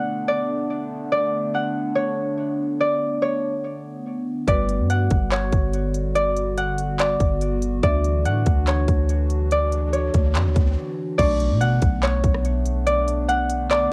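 Recorded at home on cassette with light reverb, this hazy, ethereal half-time cloud-rap excerpt opens with a mellow, ringing, fingerpicked concert harp melody carrying tape echo over a warbling, nostalgic pad with chorus and sidechain pumping and a dry, close-miked marimba in the background, before a round, deep 808-style bass and an up-front trap kit with a hard-clipped kick and crisp hats arrive at 4.5 seconds, and a very quiet riser leads through a brief break into an impact at 11.2 seconds.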